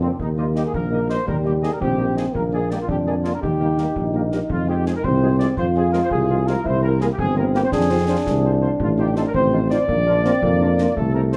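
Rousing and festive, this military-style march for wind band moves at 111 BPM in a straight 6/8 in Eb major, cut from a longer piece. A close-miked trumpet section carries the melody from 0.2 seconds, tight and soft in attack with light vibrato. A warm, roomy euphonium and a dark woodwind section, set distant in the background, add second lines. Underneath, a mellow tuba sits up front on the bass, while a very quiet, punchy French horn section plays the accompaniment from the opening moment. Concert bass drum and snare drum, with dark cymbals heard in a small room, supply the percussion, and the harmony travels from Eb through Bb7, Fm, C7 and F7/A to Bb in a light reverb.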